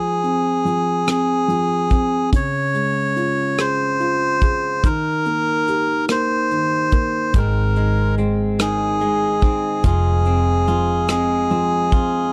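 A reedy, breathy melodica carries the melody from the opening moment of this tender, romantic pop ballad, sitting up front over a dark, woody upright piano whose slightly detuned tone and long sustain lend a mellow, boxy glow. Just after, at 0.2 seconds, a soft brush kit joins with airy hi-hat, a tight kick and rim clicks, polished and close in the mix. The pulse moves slowly in a straight six-eight at 48 beats per minute, with the harmony passing through F minor, D-flat and E-flat before settling on A-flat and returning to F minor. At 7.3 seconds a clean, direct-recorded electric guitar enters with quiet, compressed arpeggios bathed in spring reverb, while a foam-muted vintage bass adds a round, punchy low end. The sound is dry and intimate, like a close 1970s-style studio recording, and this passage is cut from a longer piece.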